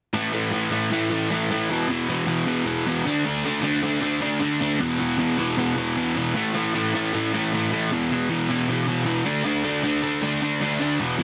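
A crunchy, overdriven electric guitar opens this energetic, rebellious punk excerpt and carries it alone from 0.1 to 11.2 seconds, its double-tracked, picked power chords cycling through A5, E5 and D5 in a straight 4/4. The guitar sits up front with a warm edge, set in a small room with moderate reverb and a dense, heavily limited modern master, and the clip is cut from a longer piece.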